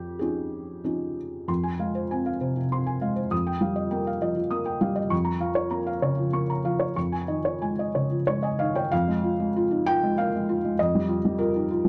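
Reflective and intimate, this short passage of neoclassical minimalist piano, cut from a longer piece, unfolds in a rubato triple metre. A single felt-muted upright piano plays alone from 0.0 to 11.9 seconds, ranging from F2 up to Eb6. Its tone is soft and mellow, with a short sustain and audible action noise that keeps the instrument close and natural-sounding, placed up front in the mix. The harmony circles around a pedal F in the bass, moving from Dbadd9/F to Fm, Ebadd9/F, Bbm/F and back to Dbadd9/F before returning to Fm at 8.9 seconds and closing on Ebadd9/F. Light reverb and a dark production frame the piano in a hushed, private space.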